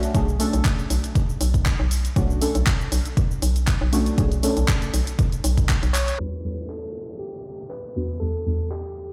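Deep house in E minor at 119 BPM with a lightly swung 16th feel, moody and warm, cut from a longer piece and heard as if played on a big sound system in a bare room with large studio reverb and a low-pass filter. Soft, dark chord stabs coloured by chorus, phaser and dub echo pump against a hollow, bouncy FM bass and a dry, overdriven kick sitting up front, while a layered kit of handclaps, hi-hat, shaker and crash keeps time as the chords move from Bm7 to Em7. Just after the kick drops away, a drum fill and band accent land at 5.9 seconds as a clean tine electric piano takes the melody. The bass then falls away, and a filter sweep on the stabs arrives alongside a faint electronic downlifter from 6.2 seconds.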